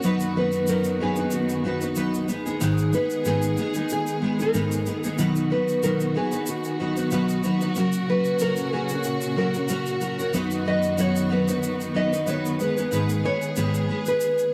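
Acoustic pop in B major at 93 BPM, this sunny, carefree passage moves with a gentle 16th-note swing and is cut from a longer piece. A double-tracked steel-string acoustic guitar, picked and up front, carries the accompaniment with a woody, full-bodied tone and the character of old strings. Beneath it, a studio string section holds smooth, bowed chords with a touch of vibrato, while a grainy, bright tube shaker sits quietly in the background. At 0.4 seconds a small-bodied, fingerpicked nylon-string guitar enters with the melody, its notes trailed by tape echo. The harmony cycles through B/F#, G#m, B and F# in a dry, close recording with light reverb and a 1970s studio feel.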